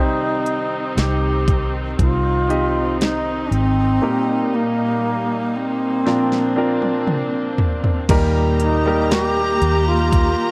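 In a straight 4/4 feel, this hopeful, emotional pop ballad fragment sets a breathy, bright bass bansuri with vibrato and tape echo over a clear baby grand piano, a lush bowed string section and a round, punchy muted electric bass. The electronic, layered drum kit enters at 0.5 seconds with a knocking kick, fat snare and crisp hats, and plays a fill from 6.1 seconds. At 8.1 seconds, as the harmony settles onto Eb, a rich, smooth violin section adds a high second line. The whole mix sits in a small room and has the worn, warbling pitch drift of old cassette tape.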